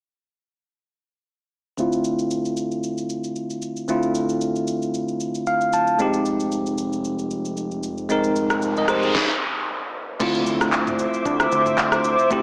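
Swung sixteenths at 114 BPM drive this late-night, hypnotic amapiano passage in D minor. A knocking kick, deep snare, rim clicks, shaker, handclaps, toms and crash from an up-front, small-room R&B kit arrive at 1.8 seconds alongside a bright, bell-like tine electric piano whose low-pass filter sweeps and which adds a short fill, over chords moving from Dm9 to Fm9 and back. A fat, nasal sawtooth bass enters at 6.0 seconds, a background noise sweep builds into a stop before an impact at 10.2 seconds, and a glassy, ethereal FM pad with chorus and sidechain pumping joins at 10.4 seconds, all within a dreamy, plate-reverb-soaked mix with a small-speaker sound.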